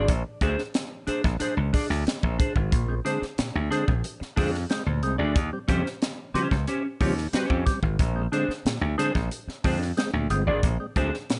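A straight 4/4 funk groove at 91 BPM in Bb mixolydian struts through this clip from a longer piece: a punchy slap bass, an airy drum kit with a high-tuned snare and a scooped, clean electric guitar through analog chorus open with a break over Bb9, before a mellow tonewheel organ adds round, percussive stabs with chorus vibrato and slow rotary speaker from 2.7 s, as the harmony moves to Eb13 at 5.4 s and back to Bb9 under light studio reverb.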